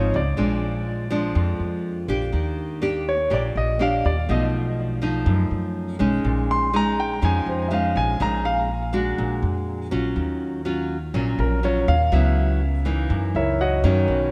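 Intimate and smooth, this short bossa nova excerpt moves at 123 BPM in a straight 4/4, settling into Eb minor from 10.2 seconds. A concert grand piano carries the melody as a solo throughout, its tone natural with deep bass, long sustain and audible action noise, touched with delay and placed up front. Beneath it, a fingerpicked nylon-string guitar supplies classical-style accompaniment, where a lush chorus and some finger squeak can be heard. A pizzicato upright bass with steel strings sounds woody and thumpy, sitting up front alongside the other two parts. The harmony drifts through rich extended chords such as Ebmaj7, B7#11 and Ebm9 before closing on Gb6, all within a dreamy mix soaked in moderate plate reverb.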